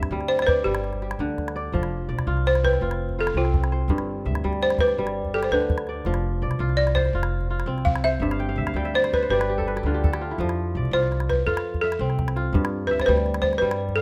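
A mellow, ringing kora opens this joyful West African string and xylophone piece in 12/8, its crisp fingerpicked arpeggios sounding together with a pizzicato upright bass and a small, close calabash. The bass is up front, with a warm, steel-strung tone and a woody body, while the dry calabash keeps the percussion part compact. At 0.3 seconds a balafon enters with the melody, struck with hard rubber mallets, and its buzzing, dry voice sits most prominently in the mix. The kora steps forward with a fill from 8.2 seconds, and at 10.4 seconds the balafon takes a solo as the other parts carry on beneath it. Light small-room reverb gives the rough home-demo mix a warm feel, and the passage is cut from a longer performance.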